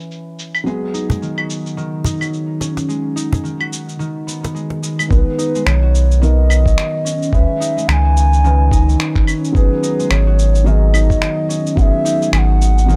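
Swung sixteenths at 108 BPM drive this mystical, meditative organic downtempo piece in G# minor, where gritty, tape-toned shaker, claves and finger snaps and a mellow felt-muted upright piano with audible action noise, pumping and echoing through analog delay, are joined by ringing fingerpicked concert harp arpeggios, a woody, close cajon from 1.1 to 4.8 s, and, from 5.1 s, an airy bamboo bansuri melody with vibrato and delay over a deep, round sine sub bass and a thumpy compressed kick, inside a dry, rough hardware-recorded studio ambience.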